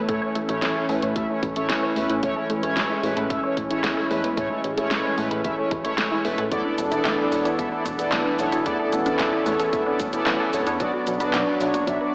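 Dreamy and nostalgic, this 112 BPM synthwave excerpt in A major moves through A, E7sus4 at 6.5 seconds and Bm at 10.8 seconds, with a smooth, sub-octave analog pad pumping under sidechain and chorus, a very quiet detuned unison pluck playing arpeggios, a glossy pulse-width chorused synth bass, bold wave-folded analog synth brass stabs up front with vibrato and a diffuse ambient delay, a punchy layered electronic kick, and a pop drum kit of fat snare, handclaps, cabasa and warm hi-hat, all steeped in a lush hall reverb with an AM radio tint.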